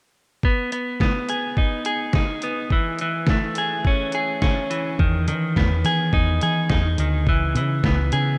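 A biting, overdriven guitar riff opens this carefree, upbeat indie rock excerpt at 106 BPM alongside a detuned 8-bit drum machine, its thumpy kick, medium-tuned snare and hi-hat sitting up front with a sampler-style, small-room character. The riff moves through B6, Amaj7, Emaj7 and C#m7 under light reverb and digital ambience. At 5.0 seconds a dark, round, punchy hollow-body bass joins to fill out the low end.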